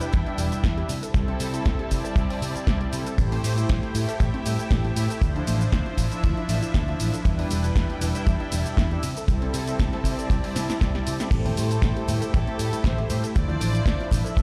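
Nu-disco at 118 BPM in A minor, this sensual, cosmic excerpt rides a lightly swung 16th-note groove over a looping Em7, C6, Am7, Dm9 progression. A dry, dark kick sits up front beside a punchy fingered electric bass with tube saturation and sidechain pumping, while a layered electronic house kit adds a punchy snare, tape-warmed hats, cabasa, crash and ride. A detuned sawtooth analog pad carries the harmony with chorus, tremolo, cassette-tape color and delay. Behind it, a lush studio string section holds sustained chords with vibrato and portamento, and a very quiet, warbling wave-folded unison pluck traces arpeggios through a filter sweep. After a drum fill at 10.6 s, an earthy, distant chamber violin section enters at 11.3 s with a short delayed melody, joined by very quiet, ringing maracas and congas. The mix is nearly free of reverb yet carries the stony character of a big sound system playing in a bare room.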